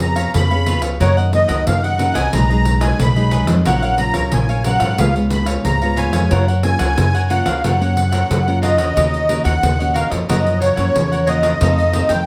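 Samba and choro at 90 BPM in 4/4, this lively, nostalgic excerpt cut from a longer piece sets a reedy, shimmering musette accordion melody up front over crisp picked cavaquinho, a full-bodied fingerpicked nylon-string guitar with audible finger squeak, a woody pizzicato upright bass and a jingly, distant pandeiro struck with hard hands, all in light reverb, moving from F# major to Eb minor at 9.0 seconds.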